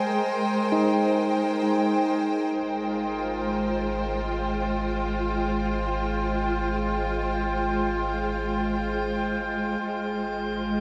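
Luminous and peaceful, this free-time ambient excerpt tuned to A4 = 444 Hz rests on lush, bowed symphonic strings holding sustained chords up front through a low-pass filter, over a nasal, detuned sawtooth drone with chorus and a drifting, glassy harmonics texture, while a gritty, barky overdriven tine electric piano plays arpeggios through analog delay from 0.7 to 2.6 seconds, and a round sine sub bass enters at 2.5 seconds as the harmony moves from Abmaj9 to Fmadd9/Ab, all soaked in a dreamy hall reverb.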